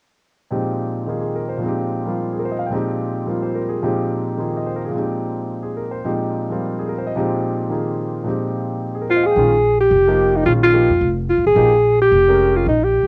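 This home cassette recording, cut from a longer jazz performance, is set in a light reverb. At a brisk 217 BPM in 4/4 with swung eighth notes, the mood is hypnotic and spiritual. A clear, intimate grand piano opens at 0.5 seconds over a Bb13sus4 harmony, sitting up front with audible action noise and a cassette tape coloring. A dark alto saxophone takes the melody as an up-front solo at 9.1 seconds, with vibrato, scooped notes and a smooth top, also carrying the tape character. Just after, the acoustic upright bass joins as the harmony moves to Bb7sus4, its pizzicato gut strings woody and thumpy beneath the saxophone, while the piano falls away before the close.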